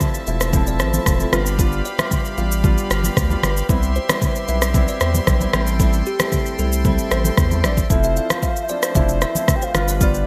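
A straight 4/4 afrobeats groove at 114 BPM drives this hypnotic, sultry clip, cut from a longer piece, built on an electronic afro-pop kit with a deep, up-front kick, rim clicks and shaker, all treated with gated reverb, while soft-handed, damped congas sit in the background. Beneath it, a thick, saturated sine sub bass with a fast attack and sustained tone moves between E1 and E2, pushed forward in the mix. A polished concert grand piano with long sustain and a lush chorus effect plays accompaniment through the Fmaj7, G7, Cmaj7 and Am7 changes, while a pipe organ on shimmering celeste string stops adds soft, romantic sustained chords. A woody, close-miked kalimba picks out a short, dry riff through a digital delay from 0.3 seconds, tucked behind the other parts. At 7.7 seconds a round, dark, octave-layered synth lead with a triangle tone and sine sub octave enters with a brief melody, carrying chorus and digital delay into the closing bars, all set in a light small-room ambience with bright 1980s-style digital production.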